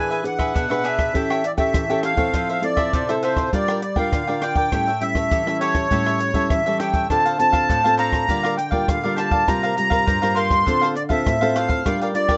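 A rough home demo mix with light reverb and dulled highs frames this nostalgic, bittersweet excerpt of samba and choro in a straight 4/4. A reedy, sweet accordion with light tremolo tuning carries the airy, up-front melody, over a full-bodied, classical nylon-string guitar whose fingerpicked accompaniment sits forward with audible finger squeak, and a crisp, bright picked cavaquinho bathed in plate reverb. A dry, natural compact cocktail drum kit joins at 0.1 seconds with hi-hat, rim click and a punchy kick as the chords move through rich sevenths and suspensions.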